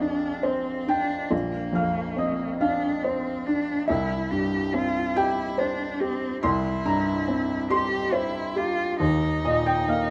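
A soft, mellow felt-muted upright piano sits up front with an intimate, short-sustained touch in this fragile, reflective neoclassical fragment in a rubato 6/8, sounding from the start alongside a single bowed cello whose focused vibrato carries a rich second line, both bathed in the wet reverb of a large studio and moving through Bbadd9, C7 and Ebadd9 before the passage is cut from its longer piece.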